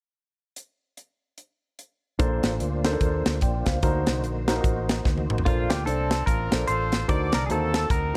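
Jubilant and reverent, this uptempo gospel excerpt in Bb major swings at 147 BPM, opening with a tight, dry funk drum kit on its own before a warm grand piano, a round, punchy fingered electric bass and a tonewheel organ through a slow rotary speaker enter at 2.2 seconds over Bbmaj9 and D7b9b13 chords; after a drum fill the organ drops out at 5.5 seconds as a twangy, bright, clean electric guitar and a clear, pop-style horn section take the melody, with light reverb and studio ambience around the band.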